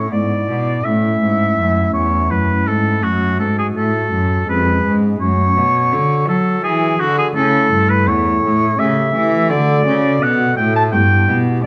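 Radiant and flowing, this brief excerpt from a baroque-style sonata movement moves at 83 BPM in 3/4, settling into D major from 7.4 seconds. A warm oboe carries the melody with light vibrato and a soft attack, while a bowed cello with a reedy gut-string tone supplies the bass and a pipe organ on hollow, mellow stopped-flute stops fills in the continuo with tremulant. The recital hall reverb is wet and roomy, lending the oboe and cello a distant quality even as they sit up front.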